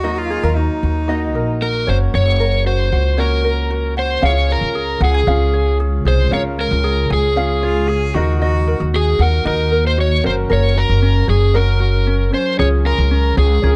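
A sunny, carefree acoustic pop excerpt in Db major at 115 BPM opens with a clear, bowed cello with vibrato over a brilliant grand piano, a fingerpicked ukulele and a woody, dark pizzicato upright bass sitting up front. At 1.6 seconds an overdriven electric slide guitar takes the melody, also up front, with the cello returning briefly at 7.6 seconds, while from 5.2 seconds an ethereal, airy pad with ensemble chorus, phaser and built-in reverb sustains chords in the background. The sound is dry and close, like a small-room 1970s studio recording.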